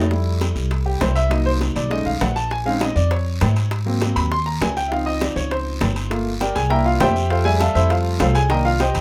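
A brisk, straight 200 BPM in 4/4 drives this sunny, sophisticated Afro-Cuban jazz fragment, cut from a longer piece, with ringing metal-shell timbales, round low-tuned bongos sitting dry in the background, and a raspy guiro. Up front, a woody pizzicato upright bass with steel strings anchors the low end while a clear concert grand piano with deep bass and an open tone takes a solo from 0.1 seconds through to 9.0 seconds. The harmony moves richly from Fmaj9 through Bbm11, Ab7 and Dbmaj7 before returning to Fmaj9 and closing on Cm7, all under a light reverb.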